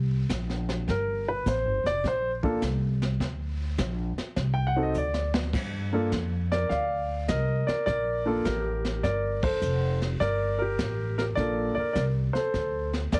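An upright bass opens this cool, swinging jazz piano trio excerpt in G minor at 103 BPM, its woody pizzicato sitting up front, and brushed drums follow almost at once with dark, smooth cymbals, a high-tuned snare and a boomy kick. An intimate grand piano carries the melody from 0.9 s, its natural action noise audible as it takes the spotlight through the opening section, before a drum fill leads into the second section at 5.5 s, where the band later hits an accent. Light reverb frames the trio, while heavy multiband compression gives the mix a radio-like sound.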